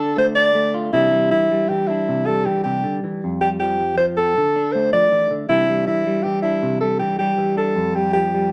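This highlife piece has a carefree, sunny mood, rolling along in a lilting 12/8 metre with a straight feel. An alto saxophone carries the melody from 0.0 to 8.5 seconds, playing a jazz-style solo with a mellow, vibrato-laced tone that sits up front in the mix. Beneath it, a semi-hollow electric guitar provides the accompaniment throughout. It is fingered and clean, with a rounded hollow-body resonance, and is also placed close and forward. The short cut from a longer piece cycles through Dm, Cadd9 and Fsus2, and a wet studio reverb gives the pair a glossy, roomy sheen.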